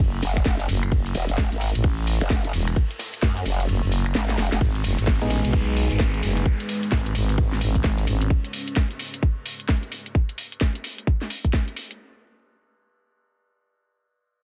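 A dense, heavily limited modern master in a digital ambience carries this aggressive, swaggering bass house passage at 130 BPM in G# phrygian, with a swung 16th feel and a chord change from F#m to G#m at 4.6 s. Up front, a thick FM bass and a saturated, wobbling growl bass with formant filtering sit over a tight electronic kick and a layered garage kit with a cracking snare, while a very quiet, gritty acoustic kit rings in a stone room behind them; the kick drops out briefly near the end of the drop, with a drum fill landing in the final moments of that gap. A moody, detuned sawtooth pad holds sustained chords beneath from the start, and a downlifter sits in the background. From 5.2 s a hollow, organ-like stab with chorus and digital delay appears, with both basses, the pad and the stab pumping to the sidechain.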